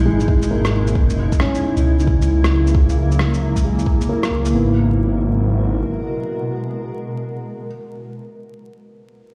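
A menacing, detuned sawtooth bass dominates this nocturnal, ghostly future garage excerpt in G# minor. Its saturated filter swell sits up front at 134 BPM in a 4/4 pulse with a 65% swing on the sixteenths, until it drops away at 5.8 seconds. Alongside it, a cloudy granular pad holds blurred, slow-attack chords moving from Emaj7 to F#7 and settling on G#m9. The bass, the pad and a soft, felt-muted upright piano all pump against the sidechain. The piano is dark and boxy, with audible action noise, and it is colored by 12-bit sampler grit, a low-pass filter and analog delay as it lingers alone until 9.3 seconds. The drums are brief. A deep, layered electronic kick sits up front in a small room, while a muffled, overdriven shaker and rim click sound pitched down, and both stop by 4.5 seconds. The whole recording is heard through a big sound system in a bare room, with large studio reverb and a layer of vinyl crackle.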